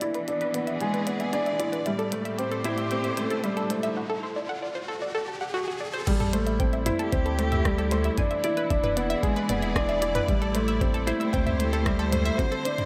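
Hypnotic and intimate, this piano and strings electronica in A minor at 114 BPM opens with a woody, slightly detuned upright piano riff up front, rich bowed strings with vibrato, a bright, nasal analog pluck arpeggio under a filter sweep, clicky minimal drums and a background riser, building to a break at 4.0 seconds; the drop at 6.1 seconds then brings in a round sine sub bass and a muffled, overdriven, thumpy electronic kick, with sidechain pumping on the strings, pluck and bass, digital delay on the piano and pluck, and a moderate scoring-stage reverb.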